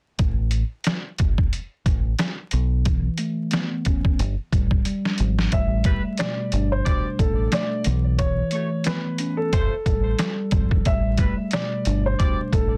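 A round, dark fingered electric bass and a muffled, pitched-down sampler-style drum kit with a thumpy kick open this reflective, gritty boom-bap hip-hop excerpt at 90 BPM, swinging gently over suspended chords. A clean, mellow tine electric piano joins at 2.9 seconds, and after a short drum fill a woody, vintage upright piano carries the melody from 5.5 seconds, filtered and touched with delay. Tight horn-section stabs with light vibrato arrive at 5.9 seconds, all beneath vinyl crackle, light reverb and a dense, heavily limited master.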